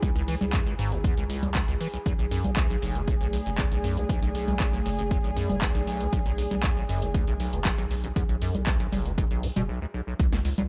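An overdriven, punchy electronic kick drives this gritty, trippy acid house excerpt at 118 BPM in straight 4/4, tuned to A4 = 435 Hz. Up front, an overdriven analog drum machine adds congas, handclaps, hi-hat, shaker and a punchy snare with a short room, while a squelchy, resonant square-wave acid bass riff with filter sweeps, chorus and dub echo rides over a deep, saturated triangle sub bass that pumps to the sidechain. A lush, detuned sawtooth unison pad holds C#m7 and Bm7 chords with chorus and pumping until 9.7 seconds, where a short break begins, and a dark, moody, wave-folded ambient pad with ring modulation and reverb sits in the background.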